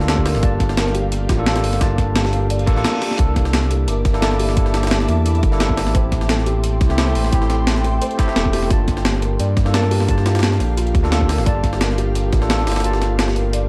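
A barky, bell-like tine electric piano with vintage sampler grit and digital delay opens this lush, melancholic liquid drum and bass excerpt at 174 BPM in G dorian, together with an ethereal, airy pad pumping under sidechain with chorus and tremolo, a felt-muted upright piano playing arpeggios through tape echo, a smooth gliding synth bass up front and a pitched-up jungle kit in the background; these are soon joined by an overdriven breakbeat kit and a tight electronic kick, with a reverse cymbal at 2.6 seconds and the kick dropping out at 12.8 seconds, all over Gm7, C13 and Am7 chords in a dark, digital ambience.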